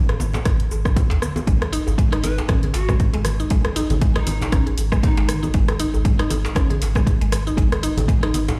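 An overdriven, punchy electronic kick drives this warm, spiritual afro house excerpt at 118 BPM with a swung 16th feel, alongside a deep, round sub bass pumping under sidechain, an afro-pop kit of hi-hat, rim click, shaker and toms, cracking djembe and saturated congas in the background, a woody FM mallet pluck arpeggiating through chorus and tape echo from 1.5 seconds, and breathy, reedy pan pipes carrying a brief vibrato melody between 2.2 and 5.4 seconds, all heard through a big sound system in a stone room.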